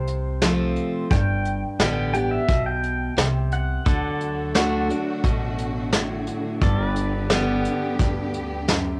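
Honky-tonk and classic country at 87 BPM in G major, nostalgic and heartfelt, cut from a longer piece and carrying the lo-fi character of a home cassette recording with light reverb. A twangy, compressed pedal steel guitar with volume swells carries the melody until 5.5 s over a dark, full-bodied picked acoustic guitar with audible finger squeak, a woody, thumpy upright bass and an up-front brushed drum kit with a punchy kick and rolled-off top. At 3.9 s, as the chords move from G to D, a bright second pedal steel and a smooth, bowed studio string section with vibrato enter with sustained chords.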